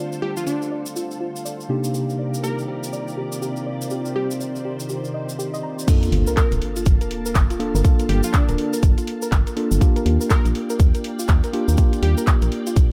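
Swung 16ths at 122 BPM in 4/4 drive this moody G minor deep house piece, where a silky string machine, a round pluck arpeggio under a filter sweep, mellow tine electric piano stabs with tape echo, a deep, warbling ambient pad and a grainy shaker support a catchy detuned unison lead over Dm7 and Cm9 until the drop at 5.9 s brings a punchy up-front kick, a house kit with bright hats, handclaps and crash, a background sub drop, and a hollow, organ-like FM bass with tube saturation moving through Gm7 and Ebmaj9.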